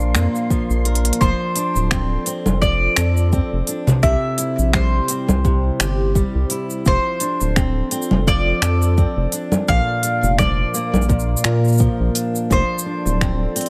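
A lightly swung 85 BPM groove in 4/4 drives this hopeful, pastoral folktronica excerpt in F major, with an up-front organic electronic kit of crisp hats, cabasa, congas and finger snaps, joined at 0.5 seconds by a soft, tape-tinged electronic kick, while a round, deep analog bass holds the low end. A dark fingerpicked steel-string acoustic guitar plays arpeggios through digital delay over a warbling, nostalgic pad of detuned chorused chords in the background, and a flickering grainy texture glimmers at the start before a drum fill ushers in a woody, double-strung mandolin melody at 1.2 seconds. The chords move through Bb, F6 and C in a dry mix.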